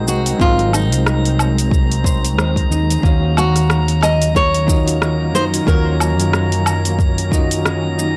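Sunset chillout with a relaxed, warm mood, this short excerpt moves at an easy swung pace over two chords, Ab7 and then Ebm7 from 3.0 seconds. A full-bodied, fingerpicked nylon-string guitar carries the melody, with audible finger squeak and fresh strings, its phrases trailed by tape echo until it stops at 7.0 seconds. Beneath it, a bell-like tine electric piano adds clean, bright accompaniment with its own tape echo, while a dark, very quiet electric guitar plays soft arpeggios. A round, punchy fretless bass sits up front with analog chorus and transformer saturation, and an electronic kick enters at 0.4 seconds to join a deep house kit of metallic hi-hats, rim clicks, shaker and woodblock that is already under way. In the background, a shimmering, detuned pad and a glassy texture of drifting overtones hold sustained tones in reverb and chorus, all captured in a dry, gritty hardware recording with digital ambience.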